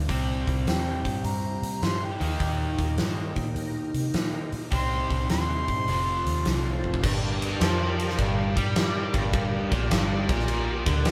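A heavy, gritty live-room blues rock and southern rock excerpt at 104 BPM in G minor with a swung feel, where a huge arena drum kit with a fat snare and punchy kick sits up front beside a bright, double-tracked overdriven semi-hollow guitar riff, a dark, round, foam-muted fingered bass holds the low end, a thick overdriven tonewheel organ with slow rotary speaker sustains chords in the background, and a mellow harmonica solo with scooped notes and light vibrato plays from 0.7 to 7.0 seconds, its final moments overlapping a drum fill at 6.7 seconds that leads into a new section on G minor.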